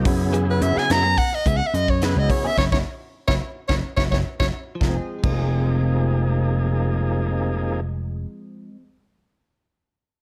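A straight 4/4 groove at 107 BPM drives this nocturnal, intense slice of electric jazz fusion in F minor, built on a punchy, amped slap bass and a crisp acoustic drum kit with a high-tuned snare and tight kick, both up front, while a thick, lightly overdriven tonewheel organ turns through a slow rotary speaker beneath. A clear, close-miked soprano saxophone with vibrato and slapback echo takes a jazz-style solo that ends at 4.5 seconds, as the band hits accents and the drums play a fill from 2.6 seconds, and a bright, compressed clean guitar, recorded direct with analog chorus and slapback echo, adds picked stabs in the background. The harmony moves from a Gb9sus4 chord to F minor at 4.8 seconds, all set in light reverb and small-room ambience.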